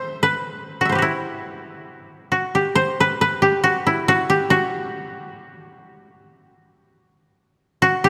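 This short passage of Japanese traditional chamber music, taken from a longer piece, features a solo koto in E hirajoshi, moving freely around 70 BPM in 2/4 with uneven, rubato beats. Plucked with fingerpicks between E4 and F#5, the koto sounds mellow and woody, sitting up front, while a church reverb with a long 3.7-second tail surrounds it. The solitary, meditative mood holds as the music shifts into a new section at 2.8 seconds and continues until 8.1 seconds.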